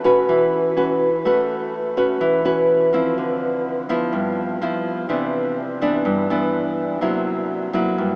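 A fingerpicked nylon-string guitar plays alone and up front throughout this short bossa nova excerpt, its classical tone set in a romantic, breezy mood at 125 BPM in a straight 4/4. Colourful chords such as A69, Dm9, G6, Cmaj9 and C7#11 carry the harmony, with a new section beginning at 1.3 seconds. A huge, wet reverb places the guitar in a vast, echoing space, though the overall sound has a small-speaker quality.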